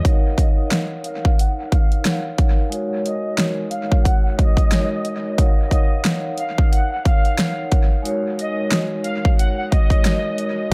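An echo-heavy mix in a small room, run through a filter sweep, gives this gritty, dark boom-bap hip-hop excerpt a shadowy, swung feel. Up front, an overdriven electronic drum kit hits with a punchy kick, a huge snare and hi-hat, while a mellow vibraphone played with soft mallets rings out Ebm9 and Ab9sus4 chords through cassette tape coloring, filtering and dub echo. From 0.4 seconds, a lush, bowed symphonic violin section adds a smooth melody with vibrato, sitting low in the mix under its own filters and dub echo.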